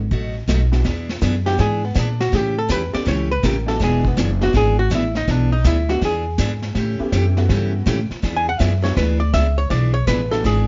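A swinging, down-home slice of country western swing, cut from a longer piece, built on a woody, thumpy pizzicato upright bass with gut strings and a dark, smooth brush drum kit whose tight kick and medium-tuned snare sit in a studio room. A bright, full-bodied picked dreadnought acoustic guitar, with audible finger squeak, and a detuned, jangly honky-tonk upright piano fill out the accompaniment over chords moving between E9 and A9. From 1.5 seconds a clean, hollow-body archtop guitar, miked and amplified, takes an up-front solo line, all under light reverb with a rolled-off top.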